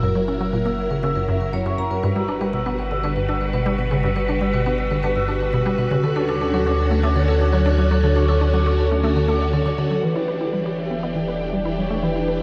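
Swirling, phased string-machine chords and a round, deep analog bass fade in together over the first 10.0 seconds of this cut from a longer piece of expansive, mysterious sequencer-driven space music, while a squelchy, resonant blip pluck plays a riff and a close-miked, metallic vibraphone sounds arpeggios through analog delay. A very quiet, bubbling texture of stepped filter moves sits underneath until it and the vibraphone stop, and a mellow, horn-like synth lead with vibrato carries the melody from 9.8 seconds. The recording sits in a huge ambient reverb, with the worn, warbling pitch drift of old cassette tape.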